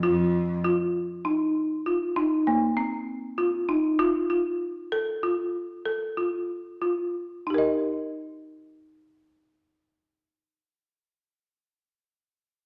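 Set in a reverberant recital hall, this short cut from a longer contemporary chamber piece in 11/8 feels playful and hopeful. A woody, rustic folk marimba played with medium-hard mallets carries arpeggios up front throughout, while a bowed cello with a rich, nasal tone and vibrato sounds a single bass note only in the opening 0.6 seconds. The music slows between 2.5 and 7.5 seconds before a new section begins.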